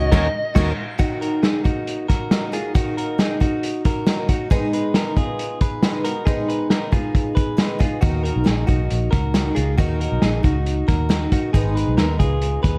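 A straight 4/4 beat at 136 BPM drives this restless, wistful stretch of jangly indie pop in Eb minor, which opens on a brief band accent where a distorted, bluesy lead guitar note and a mellow combo organ flash past before 1.0 seconds. A shimmering, octave-doubled twelve-string acoustic guitar and a bright, twangy clean electric guitar playing arpeggios through tape echo carry the Ebm and Abm chords, while a muffled, lo-fi vintage drum kit with a tight kick sits up front. A round, foam-muted electric bass sounds in the opening accent and returns at 8.0 seconds, and the dark production is framed by echo chamber reverb and small room ambience.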